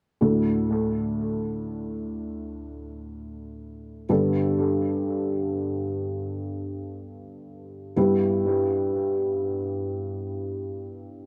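A felt-muted upright piano, soft, dark and boxy yet intimate and up front, carries a tender, heartfelt pop fragment in free time and D major from 0.2 to 11.3 seconds, moving from D to Gadd9 to Em/G under analog delay and a wet spring reverb that leaves the whole mix awash in echo.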